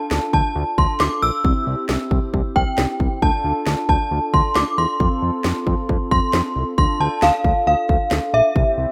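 Luminous and upbeat, this short synth-pop fragment, cut from a longer piece, is led by an up-front FM synth chime whose ringing, inharmonic tones carry the high melody, thickened by ensemble chorus and tape echo. Beneath it, a mellow, dark synth brass holds sustained, round chords with chorus over a Dm, C, Dm, F progression, while a fat, saturated analog bass with detuned sawtooth grit and a punchy house drum kit with cracking snare drive a straight 4/4 pulse from 0.1 seconds. The rough home demo mix sits in light reverb and digital ambience.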